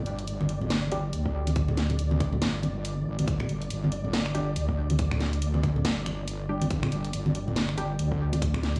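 A heavy, cavernous deep dubstep fragment at 140 BPM in half-time with swung sixteenths opens on a G5 chord, a saturated, detuned sawtooth wobble bass up front and a faint granular texture flickering high above. It is soon joined by a garage kit of finger snaps, hi-hat and cracking snare and by hard-handed congas trailing dub echo in the background. Muted, chorused chord stabs appear briefly at 0.9 s and return with dub echo from 4.3 s, and a tight, layered electronic kick lands from 1.3 s, the whole groove carrying a gritty, cassette-tinged hardware sound with light studio reverb.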